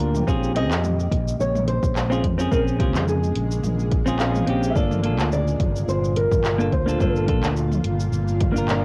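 Over a lightly swung 16th-note groove, this wistful, relaxed sunset chillout fragment has a punchy electronic kick, entering at 0.3 s, and a deep house kit of handclaps, dark hi-hats, shaker and toms setting a laid-back pulse, while a growly, up-front fretless electric bass and a compressed, picked clean electric guitar move from Bbm9 to Gm9 beneath a shimmering, detuned, granular ambient pad in the background, as a small, thumb-plucked nylon-string guitar carries the melody from 0.6 s with 12-bit sampler grit and tape echo, all captured as a homemade cassette recording in a modest room.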